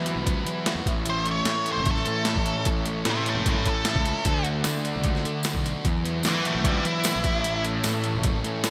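A straight 4/4 groove comes from a gritty, compressed boom bap sampler-style drum kit with a thumpy kick and gated reverb up front, over a growly, punchy fuzz fingered electric bass, in this jangly, upbeat indie rock excerpt. An overdriven semi-hollow guitar with analog chorus and digital delay and a sludgy distorted guitar play riffs in the background over the slow-attack sustained chords of a moody, detuned analog pad, while an octave-fuzz lead guitar plays a distorted, delayed solo up front from 1.1 to 7.6 seconds. A jingly, close and dry tambourine joins at 4.6 seconds, and the mix sits in a lush hall reverb with bright 1980s-style digital production.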